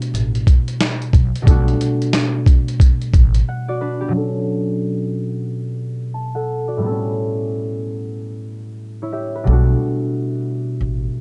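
A swung 90 BPM boom-bap groove in 4/4 opens this tough, dark hip-hop excerpt in B minor, tuned slightly flat to A4 = 437 Hz. The sampler-style drum kit sits up front with a compressed, gritty vintage 12-bit character, a thumpy kick, a medium-tuned snare and hi-hat, all carrying the air of a large room before they drop out at 3.5 seconds for a short break. A pizzicato upright bass with steel strings adds a woody, growly low end under the beat, falls silent with the drums, and returns at 9.5 seconds. Throughout, a mellow, ringing concert harp, thumb-plucked and placed up front, plays the accompaniment through high-pass and low-pass filtering, moving from Gmaj7 to Bm7 and A9 before circling back to Gmaj7. The overall sound is dry and close, giving the harp and bass an intimate presence once the drums fall away.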